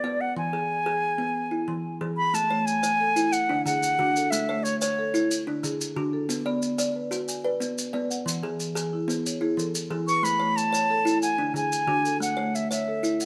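Lightly reverberant, this rippling southern African traditional excerpt in A major turns a straight 12/8 mbira-style interlocking cycle at 122 BPM over E, A, D and Bm chords, with a woody, hollow, thumbnail-plucked kalimba arpeggiating up front from the start, a bright, reedy concert flute with vibrato and a soft attack carrying the melody until 5.4 seconds and returning at 10.1, grainy maracas entering at 2.3 seconds, and a rosewood marimba played with medium mallets adding arpeggios just after.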